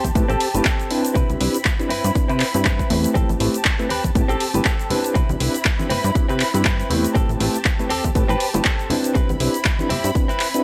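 This is a dry, gritty hardware recording with little room sound, cut from a longer piece of sunny, joyful filtered disco house at 120 BPM in 4/4, with a 56% swing on the 16ths and a C major key that moves between Am7 and Cmaj7. A punchy electronic kick sits up front with a touch of studio reverb, joined by a layered house kit of handclaps, hi-hat and shaker, whose hats and percussion carry sidechain pumping. A plucky, funky analog bass, fast in attack and decaying, is thickened by tube saturation and run through a low-pass filter with sidechain pumping. From 0.2 s a reedy, bright electric piano plays accompaniment with fast tremolo and phaser, while a clean, picked electric guitar recorded direct carries a compressed riff, both filtered and pumping. A dark, veiled section of muted violins holds lush bowed chords with vibrato under vintage 12-bit sampler grit, and from 3.2 s soft-handed tube shaker and congas add saturated, acoustic texture in the background.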